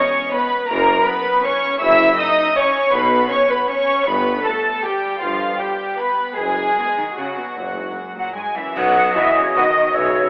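Festive and sweeping, this short orchestral ballroom waltz in B major moves in 3/4 at a rubato pace between 142 and 174 BPM, heard through a telephone-like filter and a wet concert hall reverb. Violin sections carry the melody and a second line from the start, their sul tasto bowing soft and floating, while a dark viola section fills in the accompaniment. From 0.7 seconds a cello section with vibrato, a rich double bass section in the background and a distant, roomy tuba add the bass as the harmony moves through F#5, Bsus2 and G toward F#. An airy flute ensemble joins at 8.2 seconds, and at 8.8 seconds the music lands on B with a band accent, bringing in a warm oboe, a clear clarinet, and dark cymbals with concert bass drum. Tight, very quiet French horns hold chords beneath clear trumpet stabs before the cut ends.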